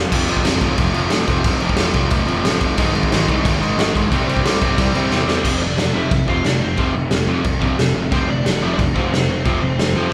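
A straight 4/4 punk rock drive at 180 BPM opens this energetic, rebellious excerpt, with a gritty, up-front garage drum kit of punchy kick, snare and crash under a bright, crunchy overdriven guitar riff, a hollow-bodied semi-hollow guitar riffing in the background, a growly fuzz bass and a very quiet, double-tracked fuzz guitar returning at 2.8 s, all moving through F5, Ab and C in one lightly reverberant live room, until a drum fill leads to a dark, distorted bluesy lead guitar melody entering at 5.4 s.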